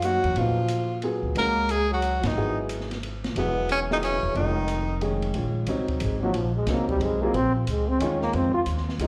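Captured live through a club PA with a light room reverb, this brief cut from a longer modal jazz piece in a lilting, swung 3/4 feels cool and spiritual, moving from Ebm11 through Dbm11 and Fm7 to Bbm9. A clear, up-front tenor saxophone with breathy subtone and vibrato carries the melody until 5.0 s, while a vintage-toned trombone with scooped notes plays a second line and then takes a solo from 5.3 s, both touched by slapback echo. A woody upright piano with short sustain, a thumpy pizzicato upright bass and a dark, small-room drum kit with boomy kick and ride keep time, and the whole band hits an accent at 2.2 s.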